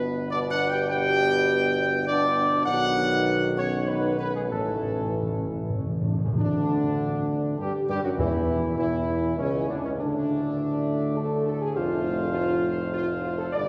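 Classical brass music, regal and majestic in 3/4 at 100 BPM, where a mellow trumpet section carries the melody up front over sustained chords from softly attacked French horns with light vibrato and a tight trombone section in the background, a distant, roomy tuba anchors the bass, and calf-headed timpani with medium mallets enter at 4.5 seconds for a fill before falling silent at 9.0 seconds, all heard from further back in a church reverb in this short cut from a longer piece.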